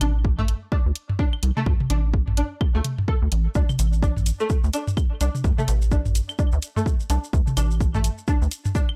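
A punchy, overdriven kick drum and a rubbery, hollow square bass sit up front in this cool, hypnotic minimal techno groove at 127 BPM with a swung 16th-note feel, joined by a twangy, nasal resonator pluck riff coloured by phaser, chorus and delay, bright overdriven hi-hats, analog-style electronic claves and toms, and grainy, close maracas that enter at 3.5 seconds, all set in a dark production with light reverb.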